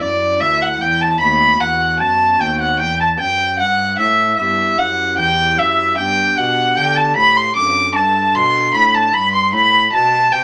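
Radiant and flowing, this brief passage from a baroque-style classical sonata movement with continuo pairs a bright oboe melody, sung with light vibrato, with an up-front violin second line rich in expressive vibrato and portamento, while a soft, hollow stopped-flute pipe organ with tremulant gives mellow accompaniment and a distant bowed cello holds a smooth, even bass, the ensemble sitting in a moderate studio reverb.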